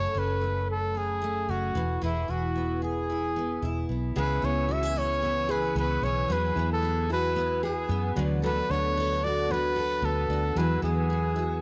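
A breathy, close-miked trumpet carries the melody up front in this carefree, heartfelt acoustic pop excerpt, its soft attack, scooped notes and light vibrato giving it a whispered, intimate pop voice. Beneath it, a bright, full-bodied jumbo steel-string guitar is picked and double-tracked with a cassette-tape color, finger squeak audible, while a dark, round, foam-muted electric bass sits up front with an amped tone. The groove is straight at 113 BPM in 4/4, moving from F#m to E before shifting at 4.2 seconds into a new section built on C#m7, Eadd9 and D6. At that point a nylon-string guitar enters in the background with deep, classical fingerpicked arpeggios treated with tape and analog delay, and a very quiet tonewheel organ adds clean sustained chords with key click, chorus vibrato and a slow rotary speaker. Light reverb and studio ambience frame the home-recorded cassette sound, cut from a longer piece.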